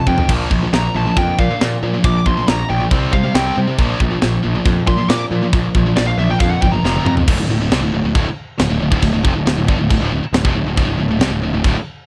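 A dark, high-gain lead guitar solo with digital delay carries the opening until 7.1 s in this heavy, aggressive heavy metal piece in D minor at 137 BPM, backed by two bright, distorted rhythm guitars (one scooped) sitting in the background, a growly, fuzz-overdriven picked bass up front, and a tight acoustic drum kit with a high-tuned snare, rolled-off top, china and crash cymbals, toms and a fill at 6.8 s, in a warm production with little reverb.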